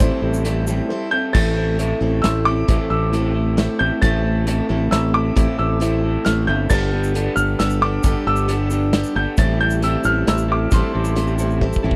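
Folk rock and heartland rock in a dusty, wistful A minor waltz at 134 BPM, where a smooth vintage grand piano carries the melody over a dark, woody upright piano, a bright picked dreadnought acoustic guitar set in the background, a slightly broken-up lo-fi electric guitar riff shimmering with harmonic tremolo, a growly up-front fingered bass and a punchy natural country drum kit, with a grainy tube shaker briefly at 0.3 seconds and returning at 6.7 seconds as the chords move from Am7 through Am and Gadd9, all captured in a dry, close 1970s-style studio sound before a drum fill at 11.6 seconds.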